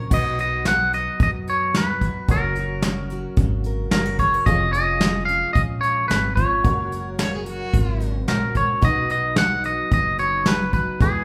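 A roomy, live-in-one-studio sound carries this heartfelt, nostalgic honky-tonk country excerpt, where a twangy, clean electric guitar leads the melody up front over a bright, full-bodied picked acoustic guitar, a jangly tack piano in the background, a woody pizzicato upright bass and a dark, smooth brush kit, while an earthy fiddle with light vibrato slips in briefly at 7.2 seconds.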